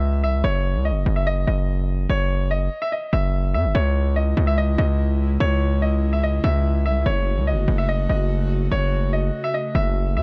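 Cold and tense, this drill-style hip hop passage, cut from a longer piece, moves at 145 BPM in 4/4 with a half-time feel. A clear concert grand piano carries the melody in a narrow high range, its short-sustained notes polished and up front, softened by a low-pass filter. Beneath it, a distorted 808-style bass sits loudest in the mix, aggressive and saturated with a fast attack and a noise layer. At 3.7 seconds an airy, breathy pad enters in the background, holding mellow, detuned chords with a slow attack, long release and chorus. The harmony shifts from C#m to F#m, and the whole track sits in a small room ambience with a dark production.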